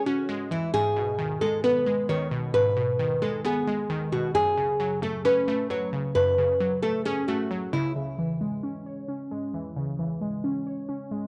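Dark and eerie, this short cut from a longer hip hop piece moves at 133 BPM in 4/4 with a half-time feel, set in C# minor. A glassy wavetable pluck carries the accompaniment from the start to 11.3 seconds, its crystalline, detuned digital tone colored by chorus and a low-pass filter, with a fast attack that quickly decays over a sub octave. A fingerpicked nylon-string guitar takes the melody up front from 0.1 to 7.9 seconds, its classical acoustic voice touched by analog delay. The harmony moves from C#m to G#m and F#m before returning to C#m as a new section opens at 8.0 seconds, where the pluck carries on alone. Light reverb and a small room ambience sit around a dry, gritty sound with the character of cassette tape.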